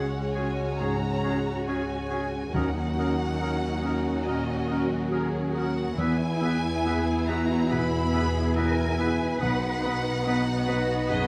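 Closely captured with a light reverb, this sorrowful, moving fragment of a cinematic film score drifts in a rubato 4/4 as a rich violin section sings the expressive melody over a second violin line, a bright oboe, a clear, very quiet clarinet and an airy, hollow small flute group entering at 0.3 s, while a deep-toned grand piano, a smooth viola section, mellow French horn chords, a double bass section and a distant cello section with portamento arriving at 0.8 s fill out the harmony, and a very quiet, dry timpani sounds briefly at 2.5 s.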